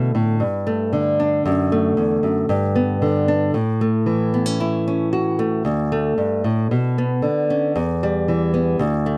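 Pastoral and peaceful, this brief folk excerpt of just over 9 seconds features a lone fingerpicked nylon-string guitar with fresh strings and a small, up-front tone, moving through chords such as Gsus2, Dadd9/F#, Bmadd9 and Em in a dry, close 1970s-style studio sound.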